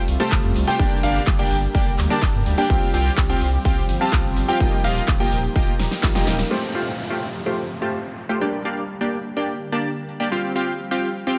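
A straight 4/4 pulse at 126 BPM drives this euphoric, uplifting festival progressive house excerpt in F mixolydian, where a punchy, up-front electronic kick and a big-room dance kit with a huge snare, metallic hats, handclaps, shaker, ride and crash carry the drop until a drum fill and band accent around 6.4 seconds hand over to a second section with a downlifter, while a bright, detuned supersaw stab riff with a filter pluck pumps through delay and a filter sweep, a deep, saturated sine sub bass anchors the low end, a dark grand piano with audible action noise plays high arpeggios, and a soft, felt-muted upright piano and a lush chorused sawtooth pad sit in the background over chords moving from Fadd9 through Gm, Csus4 and Ebadd9 in light digital ambience.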